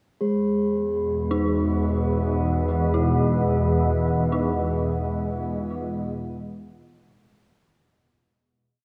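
Dark and unsettling, this short dark ambient drone opens with a ringing, metallic bronze singing bowl holding a high note at 0.2 seconds, soon joined by a nasal organ-like drone up front and an eerie, inharmonic detuned synth bell whose two slow loops of unequal length drift against each other through chorus, tremolo, diffuse delay and shimmer reverb, while a deep, moody pad in the background fades in on slowly shifting chords before fading out by 7.6 seconds, the whole piece suspended in a huge, wet reverb.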